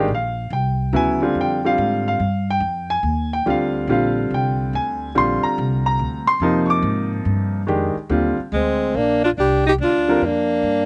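Modal jazz in Bb mixolydian at 142 BPM in a swung 3/4, spiritual and hypnotic and cut from a longer piece, opens with a clear, smooth, vintage concert grand piano accompanying up front over a woody, growly pizzicato upright bass on a Bb7 chord, until at 8.5 seconds a dark, breathy tenor saxophone with vibrato, subtone and scooped notes carries the close-miked, intimate melody beside a bright alto saxophone second line, the harmony settling on Bb at 8.9 seconds and the piano stopping at 10.2 seconds, all in a dry outdoor sound with little reverb.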